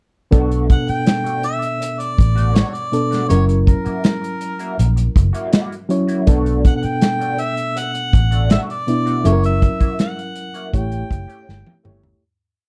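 A straight 4/4 groove at 81 BPM sets the pace for this short, complete piece of lush 1970s-style soul in B minor, its mood cinematic and bittersweet. A modern studio drum kit sits up front with a punchy kick, a medium-tuned snare, hi-hat and toms in a pumping room sound, laying down a smooth mid-tempo soul groove. Beside it, a vintage muted fingered electric bass plays a round, dark, foam-muted melodic line with muted ghost notes. A reedy, worn and slightly out-of-tune electric piano pushes spread-voiced chords with grace notes through its built-in speakers with a fast tremolo, and a slightly broken-up electric guitar through a small old amp adds a soft sixteenth-note wah riff coloured by analog chorus. A mellow, distant harmonica with light vibrato, scooped notes and slapback echo carries the jazz-style melody in short call phrases over a Bm7 to F#7 progression that turns to A7 near the close. 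The dry mix fades out from 9.3 seconds, and a drum fill at 11.5 seconds ends the piece.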